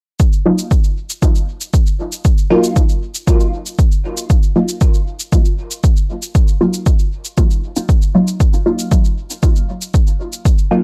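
A punchy, overdriven electronic kick drum opens this deep, hypnotic dub techno excerpt, sitting up front in a dry, gritty mix, with a quiet, tape-warm cabasa layered beneath it in a straight 4/4 pulse. From 0.5 seconds, a dark, detuned sawtooth chord stab on an Ebmadd9 chord enters, muted and filtered with a fast attack and decaying tail, its moving notch, phaser, sidechain pumping and dub echo giving it an evolving, up-front presence. The short section is cut from a longer piece and holds this single groove throughout.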